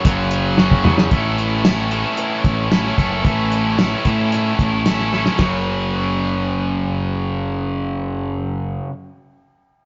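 A bright, double-tracked, overdriven electric guitar sits up front, picking a gritty, swaggering classic rock riff in F# minor at 112 BPM that moves from F#5 to A and returns to F#5 at 5.4 seconds. A growling fingered bass, also overdriven, holds down the low end, while a cloth-damped, thuddy kit with a fat snare, tight kick and dark cymbals adds fills at 0.6 and 5.1 seconds before stopping at 5.5 seconds. The rough rehearsal-room sound carries light reverb and a muffled top, in a short cut from a longer piece.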